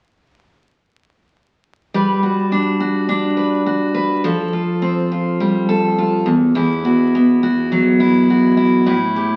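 A picked steel-string acoustic guitar, full-bodied and jumbo-sized with audible finger squeak, sits up front in this sunny, easy-going pop excerpt at 104 BPM in G major, playing an accompaniment from 1.9 to 9.4 seconds. It moves through Gmaj7, Fadd9 and Esus2 in a straight 4/4 feel. The sound carries a wet large-studio reverb and the crackle of a very old 78 rpm record.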